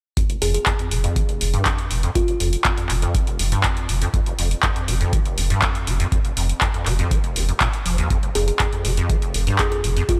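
Gritty and hypnotic, this short excerpt of acid house runs at 121 BPM in a straight 4/4 feel, set in F minor. An overdriven electronic kick, with a deep thump re-recorded in a small room, drives the groove alongside a punchy, tape-toned analog drum machine supplying handclaps and hi-hat up front. A rubbery, resonant acid bass riff with a square-wave filter pluck and dark saturation moves between F1 and F3, thickened by tube saturation and ensemble chorus and pumping with sidechain compression. Beneath it, a round, wave-folded analog bass holds a sustained F1 from 0.4 to 10.0 seconds, also ducking with sidechain pumping. A woody, close-miked kalimba plays short thumbnail-plucked figures between F4 and Ab4, appearing from 0.4 to 2.8 seconds and again from 8.4 seconds, its dry attack trailed by a diffuse ambient delay. Light reverb gives the mix a little space.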